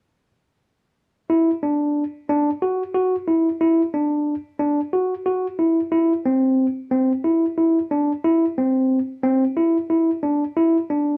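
A worn, warbling cassette sound with a wet small-room ambience wraps this driving, intricate progressive instrumental excerpt in 7/8 at 181 BPM, where a gritty, overdriven tine electric piano, pushed through a combo amp and placed up front, plays solo between C4 and F#4 from 1.3 to 11.2 seconds.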